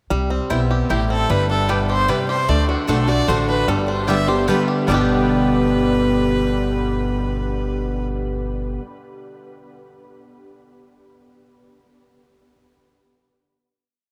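A lively, driving bluegrass piece in 3/4 at 150 BPM in G major, where bright, full-bodied picked guitar with alternating bass, strums and runs and a woody, thumpy upright bass walking up between roots and fifths sit up front alongside twangy banjo rolls, a mandolin chopping the off-beats from the background joins in shortly after, and from 0.9 seconds a biting, nasal fiddle carries a running eighth-note tune over a C, G, D, G progression, all bathed in a huge, echoing reverb that lingers on the final chord.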